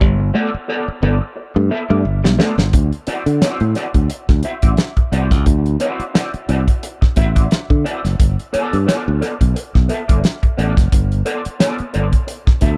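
A funk groove in 4/4 at 88 BPM, with the sixteenths swung, sets a strutting, playful mood in this short cut from a longer piece. The soul drum kit is up front, opening on a fill, with a fat snare, tight kick and a rolled-off top in a pumping booth sound, while a bright fingered electric bass sits just as close, punchy and direct, ranging from F#1 to D3. A clean, picked electric guitar, compressed and coloured with ensemble chorus, states a riff only in the first 2.5 seconds. A darker, slightly broken-up fingered guitar with wah and spring reverb enters almost at once and stays low in the mix as accompaniment between B3 and E5. The harmony moves from G9 to D9 at 2.7 seconds and back to G9 at 8.2 seconds, all in a dry, close-sounding room.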